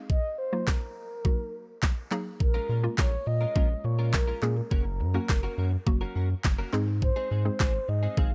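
A hollow, detuned square-wave pluck opens this driving, energetic dance-pop excerpt at 0.0 seconds, bouncing through chords with chorus and a pumping sidechain feel. At 0.1 seconds a mellow, horn-like synth lead carries the melody with soft attack, gentle vibrato and a filter sweep, while an up-front electronic pop kit lays down a knocking kick, a fat tape-tinged snare and handclaps. At 2.4 seconds a round, deep analog bass joins, dark and sustained with its own pumping motion, alongside a clean, direct-recorded electric guitar riff that sits low in the mix, picked and compressed with analog chorus. The harmony moves from Ebmadd9 through Bbm7 and Gb to Ab. The sound is dry and close, with little reverb.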